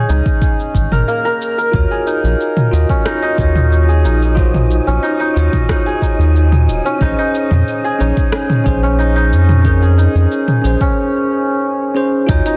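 Densely limited with light reverb, this hypnotic, meditative organic downtempo fragment opens on a shimmering hammered santur playing tape-echoed arpeggios over a round, dark, up-front analog bass with tube saturation and sidechain pumping, an overdriven deep house kit of cabasa, metallic hi-hat, rim click and toms, and a deep electronic kick re-recorded in a large room, joined at 1.7 seconds by a bell-like tine electric piano with sidechain pumping and tape echo and at 3.5 seconds by an airy, breathy wind-like noise texture in the background, before a break at 11.0 seconds.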